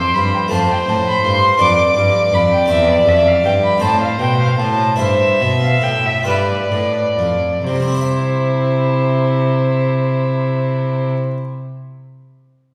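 Serene and dance-like, this fragment of a baroque-style sonata movement in 6/8 pairs two period-style, gut-strung violins: a dark, nasal and distant melody line above a second violin that is rich with light vibrato. Beneath them, a brilliant Italian-style harpsichord with octave strings plucks the accompaniment while an up-front cello carries the bass, and all three bowed strings share a reedy edge. The music slows between 1.6 and 7.7 seconds before a new section begins at 7.7 seconds, all wrapped in the long, wet reverb of a recital hall.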